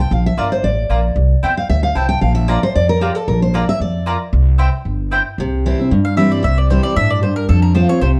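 A brisk, straight four-beat drive runs through this lively, virtuosic bluegrass fragment, cut from a longer piece. The upright bass anchors the low end with a thumpy, gut-string pizzicato tone, while the picked steel-string acoustic guitar sits up front and takes a solo through the opening 5.4 seconds over chords moving between Bb and C. A bright mandolin adds picked double-string stabs alongside the guitar during this passage. From 6.0 seconds, a second mandolin, woody and up front, carries a short melody, and the harmony shifts to F at 7.5 seconds. The production is dark and warm, with light reverb.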